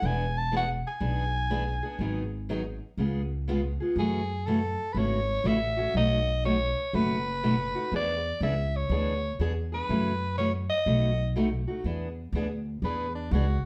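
A raspy, growling soprano saxophone with light vibrato carries the melody and takes a solo from 11.8 s in this charming, playful snippet of acoustic string swing, backed by a dark picked steel-string guitar with audible finger squeak and a woody, thumpy pizzicato upright bass, all set back in a wet studio reverb.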